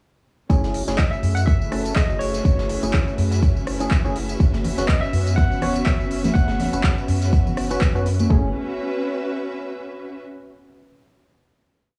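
A four-on-the-floor electronic kick sits up front at 123 BPM in 4/4, and a 55% swing on the sixteenths gives this deep house piece in F# minor a hypnotic, late-night sway. Around it, a programmed kit adds smooth hats, rim clicks, claps and tambourine. A very quiet looped breakbeat of brushed snare and hi-hat lends a dark, rolled-off acoustic texture, and bright, high-tuned congas enter softly in the background at 4.5 seconds with syncopated hand drums. A round, deep analog bass carries a dotted rhythm, while hollow, organ-like chord stabs with tape echo and an airy, breathy pad move between F#m9 and Bsus2/F#. The bass, stabs and pad each carry sidechain pumping, as does a lush, distant bowed string section with vibrato. Above them, a barky, lightly overdriven tine electric piano plays call phrases coloured by analog delay, and once the groove ends, the strings hold the closing F#m9 alone in a small room ambience until 10.2 seconds.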